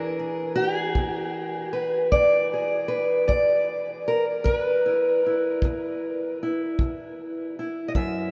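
Drenched in a huge, lingering reverb that places it in a vast, echoing space, this short cut from a longer acoustic country blues piece moves at a laid-back 51 BPM in 12/8, with a soulful feel in E mixolydian resting on an E7 chord. A fingerpicked steel-string parlour guitar carries the melody from the start, dark and boxy, sitting up front with a slapback echo across its range from E2 to E5. At 1.0 seconds a smooth, punchy kick drum joins, close and present with a small-room character, staying in until 8.1 seconds.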